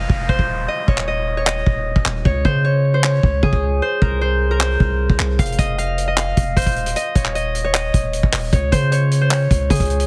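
This dark, eerie hip hop fragment rides a half-time trap groove in 4/4 at 153 BPM. A vintage drum kit enters at 0.1 s with handclaps, hi-hat and a punchy kick, sounding acoustic and natural as if captured in a small room, its top end rolled off. Underneath, a deep, boomy 808-style bass with a sine core and a noise layer strikes with a fast attack and decays into a mellow tail, sitting up front beside the drums. A fingerpicked concert harp carries the melody between Ab4 and F5, its ringing acoustic notes passed through a digital delay, over a progression that moves through F5, Dbsus2/Eb, Db5 and Bbsus2/C. An electronic downlifter lingers in the background until 2.3 s, while the opening break runs to 5.4 s, and the whole mix is bathed in studio reverb and squeezed into a heavily compressed radio sound.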